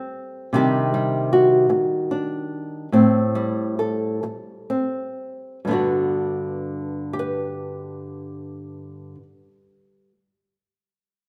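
Bathed in a wet, large-studio reverb, this gentle, peaceful folk excerpt in G major and 6/8 features a solo fingerpicked nylon-string guitar, dark, woody and small with old strings, sitting up front at 40-52 BPM, slowing down from 0.5 to 5.6 seconds as Am7 and Cmadd9 harmonies give way to a closing Gmaj7.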